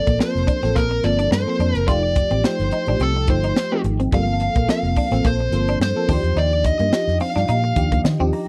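A dry, close studio sound with light reverb frames this polished 1980s jazz-funk pop excerpt in G minor, urban and bittersweet at 107 BPM with a gentle sixteenth-note swing, where a nasal, overdriven lead guitar with a parked wah and slapback echo carries the melody up front over glassy, bell-like FM electric piano chords with chorus, a dark, hollow-bodied semi-hollow guitar riff, a round, foam-muted fingered bass and a crisp fusion kit with a high-tuned snare and tight kick, moving through Gm11, F9 and Ebmaj9 before an electric piano fill at 7.8 seconds.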